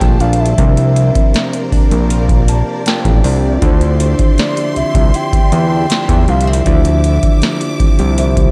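An echo-heavy digital ambience wraps this short excerpt of contemporary R&B, a sensual, longing passage cut from a longer piece. Up front, a booming analog drum machine with a deep kick, crisp snare and metallic hats carries vintage 12-bit sampler grit and the air of a large room, while a fat, thick analog bass of detuned sawtooth and triangle tones adds wave-folded weight and a filter sweep. Floating above, a soft octave-layered synth lead sings the melody in a round, dark voice with sub-octave depth, vibrato, chorus, tremolo and analog delay, falling silent at 8.0 seconds. Further back, a mellow tine electric piano heard through its built-in speakers plays a clean accompaniment and adds a fill from 2.1 to 3.6 seconds, beside a classical nylon-string guitar whose fingerpicked arpeggios show finger squeak and a trail of analog delay. A close, lush symphonic string section holds expressive bowed chords with a soft attack as the harmony moves from Bbmaj13 through C9sus4 to Dm9.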